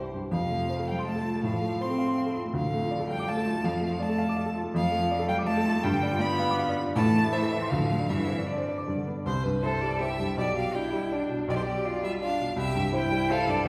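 A violin, cello and baby grand piano begin together in this spirited, cheerful classical-period movement for piano trio, a quick 3/4 at 162 BPM played with rubato in F major before turning to C major from 4.7 s. The clear, focused violin carries the melody with vibrato, the cello sings a warm second line with vibrato and expressive portamento, and the natural-sounding piano supplies the accompaniment up front. A wet scoring-stage reverb places the trio further back in the room, and this short fragment of a longer piece closes on C at 12.6 s.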